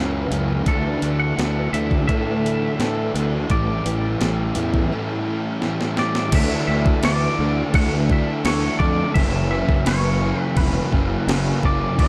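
A crisp 8-bit drum machine sits up front with a thumpy kick, medium-tuned snare and overdriven grit, entering at 0.3 seconds and rolling a fill from 5.6 to 6.3 seconds in this blissful, dreamy shoegaze and dream pop piece at 85 BPM in D major. Beneath it, a growly fuzz bass, a thick dark fuzz guitar riff and a crunchy overdriven guitar riff with reverse reverb churn together, while a boxy, shimmering twelve-string acoustic picks octave-doubled arpeggios in the background with ensemble chorus and slapback echo. A clean, twangy electric guitar carries the melody from 0.7 seconds over chords moving from Dsus2 to A7sus4 and on to F#7sus4, all in a dark, dry production.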